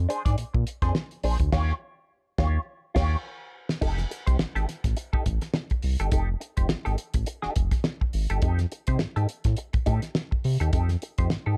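A round, deep analog bass opens this strutting funk excerpt, its detuned tones set up front over a swung sixteenth-note feel, joined almost at once by a damped 70s drum kit with a fat snare, tight kick and dark cymbals, and a clean, compressed electric guitar coloured by wah and plate reverb. The band hits a shared accent from 1.5 seconds as the harmony moves from Bb9 to Eb9, and a drum fill at 3.2 seconds leads into a new section on F9 at 3.8 seconds. The dry, dark production keeps the groove close and warm until the cut at 11.6 seconds.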